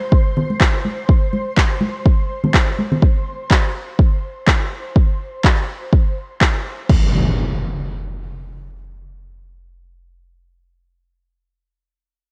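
Warm and late-night, this deep house excerpt moves at 124 BPM with a 16th-note swing, built on a deep, overdriven electronic kick drum and a punchy, tape-warm analog drum machine that adds crash cymbal and handclaps with the roomy air of a large space. Bright congas played with soft hands sit up front until 3.0 seconds, while a silky sawtooth string pad with ensemble chorus, vibrato and a moving notch sustains quietly in the background. At 6.9 seconds the groove gives way to an electronic impact that carries the second section, all framed by light reverb and a cassette-tape sheen.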